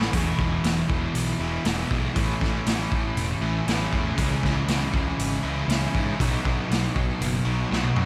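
An overdriven semi-hollow guitar sits up front with a hollow-body tone, picking a riff that ranges from E2 to F#4 and trails a reverse reverb behind its notes. This short cut from a longer rock track leans into shoegaze and dream pop, moving at 119 BPM in a straight 4/4 in E major with a hazy, dreamy mood. Beneath it, a thick fuzz guitar plays its own dark, distorted riff in the background, thickened by ensemble chorus, while a picked electric bass adds a fuzzy, overdriven low end that reaches down to E1. A raw garage drum kit played in a small room drives the groove on hi-hat, kick, snare and toms, with a boomy kick, a medium-tuned snare and a gritty, saturated sound whose top end is rolled off. The harmony steps through E, A, C#m and B, and the drums close on a fill starting at 7.7 seconds, all set in a light studio reverb.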